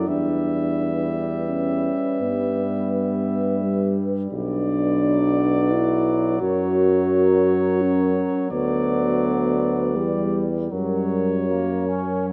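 Bathed in the moderate reverb of a concert hall, this yearning, solemn excerpt of a hymn-like classical brass band piece in 3/4 unfolds with a rubato feel, as a clear, smooth cornet carries the melody over a mellow French horn section's second line in the background, a distant, brilliant trombone and a dark, vibrato-tinged euphonium in accompaniment, and an up-front, vintage-toned tuba with light vibrato holding down the bass through harmonies moving from Em to Bm, F# and Em7.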